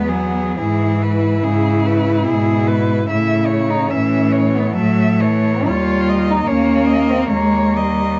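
In a rubato 3/4 that drifts between 60 and 76 BPM, this brief classical fragment for cello ensemble unfolds with an elegiac, melancholic lyricism, tuned to A4 = 439 Hz. Four bowed cellos, each a single player with vibrato, sound together throughout. The top cello carries the melody between G#4 and E5 in a close, even tone, while a darker, woody cello sits more distantly yet up front beneath it as a second line. Lower down, an expressive accompaniment part adds soft attacks and portamento, and a smooth, full-bodied bass cello anchors the texture from D#2 to A2. The harmony moves from E through A, arriving at a tense D#7 at 5.7 seconds, all within a dusky, gently reverberant production that keeps the upper range muted.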